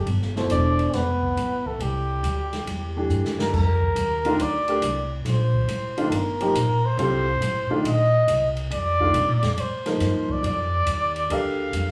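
Open and hypnotic, this modal jazz cut is taken from a longer piece and swings along at 139 BPM in 4/4, settling into F mixolydian from 3.5 s. A dark, breathy trumpet carries the melody up front with light vibrato, its tone set in plate reverb, while a clear trombone with vibrato sounds a distant, roomy second line only until 3.1 s. The upright bass is woody and pizzicato with steel strings, sitting up front alongside the trumpet, and a clear upright piano with long sustain plays accompaniment from 0.4 s. The acoustic drum kit sounds airy and polished, with dark cymbals, a medium-tuned snare and a boomy kick, and a drum fill from 3.1 s leads into the second section. The harmony moves from G13 and C69 to a long F9sus4 before landing on Dm, and the whole band is heard from further back in a small club room with a wet reverb.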